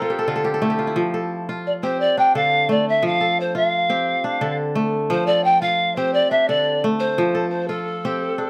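A reedy, airy bamboo pan flute carries the melody with gentle vibrato, a soft chiffy attack and a slightly distant sheen, while a crisp, ringing kora, fingerpicked and up front, spins arpeggios beneath it and opens with a short fill in the first second. This brief snippet of West African traditional string music moves at 116 BPM in a flowing 12/8, in F major with chords alternating between F and D, sometimes D minor and sometimes a bare D fifth. The mood is hypnotic, captured by close, detailed microphones with light reverb.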